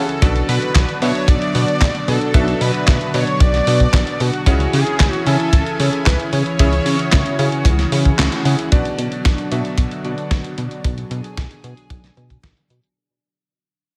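Italo disco at 113 BPM in B dorian, melodramatic and danceable, with a bold, detuned sawtooth unison lead singing its melody over a lush, warbling pad and clangy stabs from a vintage electric grand piano until the lead drops away at 8.1 seconds. Underneath, a glossy, chorused synth bass with a filter pluck runs alongside a tight, dry kick sitting up front and a gritty sampler-style kit of handclaps, hi-hat and fat snare, while the harmony moves from Bm to C#m and back. After a band accent at 8.2 seconds, where the kick briefly drops out, this cut from a longer piece fades out from 8.7 seconds in light small-room ambience.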